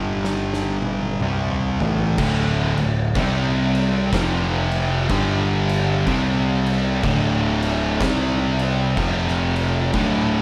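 Recorded with light reverb and a small room ambience, this ominous, hypnotic stoner and doom metal passage, cut from a longer piece, sets two thick, dark fuzz guitars riffing in the background over a growly, overdriven picked electric bass and an oversized low-tuned drum kit with a boomy kick and rolled-off top, which opens with a fill from 0.2 to 2.2 seconds, after which a bright, double-tracked high-gain distorted guitar joins the riff.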